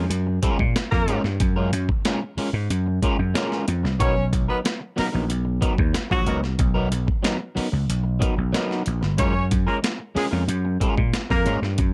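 A vintage slap bass anchors the low end of this cool, funky excerpt, its bright, growly, punchy tone sitting up front from the very start. A breakbeat sampler-style drum kit joins at 0.1 s with a gritty, compressed, tape-colored sound, built on a thumpy kick, a medium-tuned snare and hi-hat, also placed close in the mix. An electric guitar at the edge of break-up supplies accompaniment in a dark, fingered tone, treated with phaser and kept lower in level. A horn section enters at 0.9 s as a second line, tight and smooth on top with light vibrato and octave doubling, set in plate reverb. Over a straight 4/4 funk feel in a light reverb, the harmony moves from Gbmaj9 to Bmaj7 at 4.0 s before returning to Gbmaj9.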